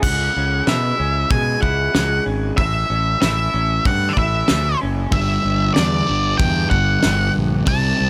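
Quiet-loud alternative rock at 94 BPM in straight 4/4, angsty and cathartic, this fragment of a longer piece sets a dark, up-front octave-fuzz lead guitar melody over a growly, bright fuzz bass and a distant, roomy brush drum kit with dark cymbals and a fat snare, while a lo-fi, slightly broken-up electric guitar through a small old amp plays chorused arpeggios over C#m and A until 5.1 seconds, when a sludgy, warm overdriven guitar riff takes over on a G5 chord, the whole sound sitting in light reverb.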